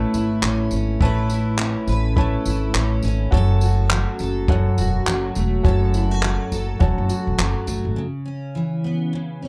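A dark, dry and warm production frames this carefree, sunny acoustic pop at 104 BPM in 4/4 with a swung 16th-note feel, where a bright, full-bodied, double-tracked picked jumbo steel-string guitar, a woody, thumpy pizzicato upright bass, a jazz brush drum kit with boomy kick, handclaps and tambourine, and a quieter, polished concert grand piano with audible action noise move from Aadd9 to F#m before the guitar carries on alone over C#m7 from 8.0 s to 9.5 s.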